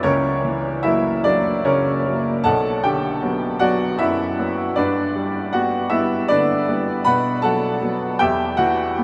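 A huge, wet reverb with an 8.4-second decay sets this recording in a vast, echoing space, where a baby grand piano sits up front with a brilliant, open, gleaming tone. This melancholic, solemn classical passage in B minor moves at a rubato 52 BPM in 6/8, counted in dotted quarters, with the piano spanning B1 to B5 as accompaniment. Cut from a longer piece, the chords move from F#7/C# to Bm, G, B5 and finally Em at 8.2 seconds.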